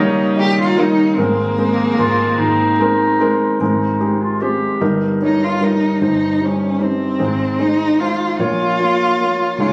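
Tender and heartfelt, this acoustic folk-pop ballad moves slowly at 50 BPM in a straight 6/8 lilt, set in Ab major and cut from a longer piece. A dark, bowed cello carries the melody from 0.4 seconds, played close and up front by one player with expressive vibrato and portamento. A grand piano accompanies throughout with long sustain and audible action noise, while a vintage, foam-muted fingered electric bass sits lower in the mix with a round, amped tone. A distant, roomy clarinet adds a classical-style second line until 5.0 seconds, and a nasal, gut-string chamber section holds period-style sustained chords in the background until 3.6 seconds. The harmony passes from Eb7 and Abadd9 through Eb/G, Cm/G and Ab before settling on Bbm, and a light club reverb colours a sound captured on a phone in the room.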